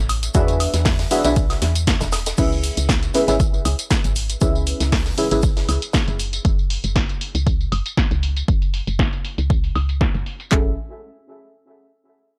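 A woody, round FM bass opens this late-night, smooth deep house excerpt at 118 BPM in F# minor with sidechain pumping, joined by a dry analog drum machine with an overdriven, punchy kick and handclaps up front, a second drum machine with a tape-warm snare, hats, crash, tambourine and woodblock, a high-tuned acoustic cocktail kit in the background that stops at 6.3 seconds, and deep mellow chord stabs with chorus, phaser and tape echo moving from E7 to C#m7 before returning briefly on F#m7 at 10.5 seconds, all in a gritty, saturated small room while a filter sweep runs over the bass from 2.4 seconds.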